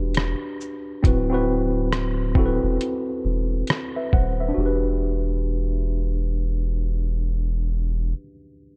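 A swung 68 BPM groove in 4/4 opens this melancholic, hazy lo-fi hip hop excerpt, with a muffled, pitched-down sampler-style kit of thumpy kick, hi-hat, rim click and shaker that drops out at 4.4 seconds. A deep, round dub sub bass sits underneath while a worn, slightly out-of-tune tine electric piano, lightly overdriven, carries Em9 and D13 chords through a filter sweep lasting until 4.6 seconds. The piano rings on to 8.8 seconds, all within a dark, digital ambience.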